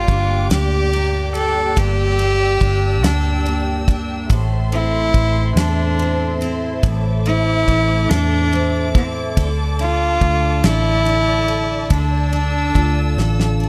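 A nearly reverb-free excerpt of a swaying, heartfelt six-eight pop ballad, where a reedy, gut-string cello carries the bowed melody up front over double-tracked, full-bodied picked steel-string acoustic guitar, a soft-attack studio string section holding sustained chords with vibrato, a round, foam-muted fingered electric bass and a damped 70s drum kit with fat snare and bright cymbals that closes on a drum fill at 13.2 seconds.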